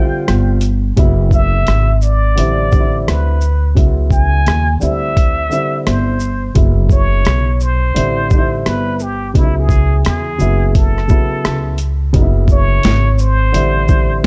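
Cool and nocturnal, this jazz-hop cut from a longer hip hop piece moves at an unhurried 86 BPM in 4/4 with a sixteenth-note swing. A trumpet with a plunger mute carries the melody from the first moment, its breathy, wah-wah tone shaded with vibrato and scooped notes in a vintage jazz style. Beside it, a dark upright piano accompanies with mellow, intimate voicings, its action noise audible, moving through lush chords such as Dm11, F#9sus4, Am11 and C#m11. At 0.3 seconds the pizzicato upright bass, sitting up front with a woody, steel-strung sound, joins a compressed, pitched-down boom bap sampler-style kit of thumpy kick, high-tuned snare, rim click, hi-hat and shaker, the drums gritty and loudest in the mix. Small room ambience wraps the whole in a dark, warm production that suits a late-night mood.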